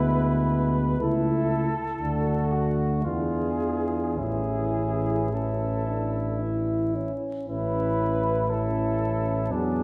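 A mellow tuba sits up front, its smooth top and light vibrato grounding this short, hymn-like classical passage for brass band, cut from a longer piece. Above it, a flugelhorn carries the tender melody with a gentle vibrato, sounding distant and roomy, while a second, clear-toned flugelhorn traces a supporting line beneath it. A punchy euphonium and a close-miked trombone set in the background fill out the accompaniment, and all five voices play together from 0.0 to 9.8 seconds. The music moves in an unhurried triple metre with a flexible, rubato feel, its harmony passing from E7 over D through A/C#, D and E7b9 before coming to rest on A. The listener is placed further back in a recital hall with generous reverb, and a layer of vinyl crackle adds to the serene air.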